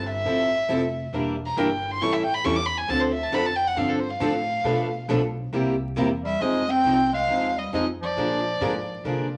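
A warm, bowed violin sings up front with soft-attack vibrato and an airy sul tasto tone over two bright, boxy picked acoustic guitars and a woody, thumpy pizzicato upright bass in this fiery yet bittersweet jazz manouche excerpt at 136 BPM, before a raspy, growling clarinet joins at 6.2 seconds as the harmony darkens from Fmaj7 to Fm7, all set in a club reverb with vinyl crackle.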